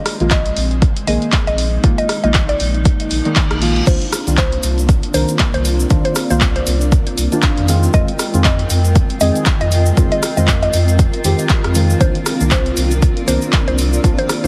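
A heavily compressed, radio-like sound with light digital ambience frames this late-night, hypnotic deep house excerpt in C minor at 118 BPM, swung on the 16ths, where an overdriven, up-front kick and a punchy analog drum machine of hi-hat, handclaps, rim click and crash drive beneath a round sine sub bass that pumps with the sidechain. Dark, detuned chord stabs with chorus, phaser and delay, a breathy pad carrying 12-bit sampler grit, and a blurred, evolving granular cloud pad drift through chords from Bb7sus4 to Cm11 and Fm7, while a woody FM mallet pluck plays a melody between C5 and Eb5 through tape-worn chorus, phaser and digital delay. A reverse cymbal sounds at 3.1 seconds, and a grainy, bright tube shaker joins at 3.9 seconds and plays to the end.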